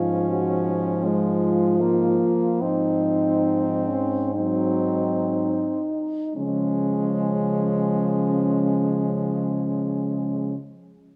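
Bathed in a moderate recital-hall reverb, this serene, tender classical fragment for horn quartet drifts at a rubato 28-42 BPM in Db major, slowing through its first 6.4 seconds as a mellow, lightly vibrato-tinged horn sings the melody above an up-front, warm second horn, a smooth-topped inner accompaniment horn and a dark, distant, roomy bass horn, the harmony settling from Ab7 onto Db at 6.4 seconds before the passage breaks off at 10.6 seconds.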